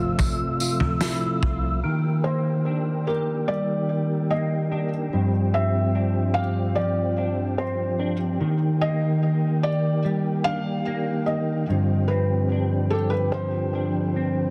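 Blissful and dreamy, this 73 BPM dream pop fragment opens with a dark, foam-muted picked bass, joined a moment later by a brief burst of loose indie drums, their fat snare and punchy kick gritty and saturated, both gone by 1.8 s, leaving a clean hollow-body electric guitar weaving chorused, delayed arpeggios, a lightly overdriven tonewheel organ holding mellow chords with key click and third harmonic percussion under lush chorus, and a felt-muted upright piano singing an intimate melody through digital delay with audible action noise, all drifting over Fmaj7, Ebmaj7 and G7sus4 in a light studio reverb and a dense, heavily limited master.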